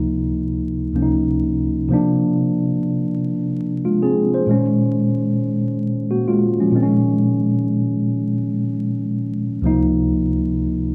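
Soulful and introspective, this short R&B passage is cut from a longer piece and carried entirely by a solo tine electric piano. The piano sits up front with a mellow, clean and direct tone, spanning from Db2 up to C5 in a relaxed 4/4 with a gentle swing on the sixteenths. Its harmony drifts from Dbmaj7 to Bbadd9 at 1.9 seconds, settles on a lingering Eb7sus4, then returns home to Dbmaj7 near the close at 9.6 seconds. A wet studio ambience gives the sound a live, in-the-room quality, while a layer of vinyl crackle adds a worn, intimate texture.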